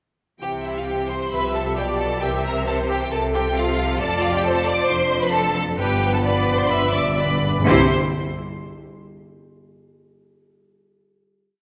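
Bathed in the generous reverb of a scoring stage, this spirited, graceful classical-period piece for symphony orchestra moves with a rubato feel as lush violins carry the melody and double it at the octave, violas enter at 1.3 s with a smooth counter-melody, a warm French horn section holds chords, bright, intense cellos and focused double basses sustain the bass, and round, soft-mallet timpani strike single notes before a fill from 5.8 s leads to the final chord at 7.7 s.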